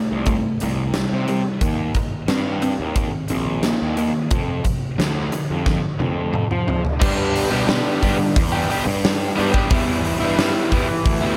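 Light studio reverb gives this short cut from a longer classic rock piece an up-front, in-your-face presence, with every part sitting close to the listener. The mood is driving and swaggering in a straight four. A dark, overdriven electric guitar, double-tracked and compressed, opens at 0.0 seconds with a riff moving through C5, Eb and F5. A growly, fuzz-laden picked electric bass, bright and direct, sits beneath it. A huge acoustic arena drum kit with a pumping hall sound, punchy kick, medium-tuned snare, toms, hi-hat and bright crash cymbals drives the groove, and a drum fill from 5.7 seconds leads into a new section at 7.0 seconds, where the harmony shifts to G and then Em.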